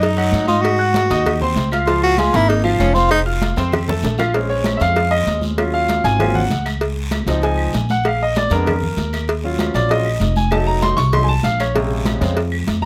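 Close, detailed and nearly dry, this fiery, sophisticated Afro-Cuban jazz cut in Bb minor races along at 194 BPM in a straight 4/4. A breathy tenor saxophone with vibrato and scooped notes leads up front until 3.2 seconds. A clear, open baby grand piano accompanies from the start and takes the solo at 4.3 seconds, its long-sustaining harmonies moving through chords such as Ebm9, Dbmaj9 and Bb7b9, while a dark, woody pizzicato upright bass sits forward beneath soft-handed, high-tuned congas with a thin skin, tight bongos and cowbell, a raspy guiro and distant claves from a large room.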